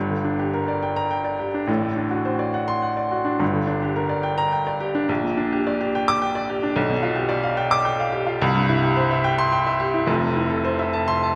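A classical virtuoso piano study in a brilliant, heroic mood, this excerpt moves in a flexible, rubato three-beat feel, with harmony that turns from a minor key toward a major one at 6.8 s. A solo baby grand, placed up front, carries everything from low bass to high treble, its tone clear and intimate, with long sustain and the mechanical noise of its action audible. The instrument sits in a wet concert hall whose reverb lingers for about 2.1 seconds.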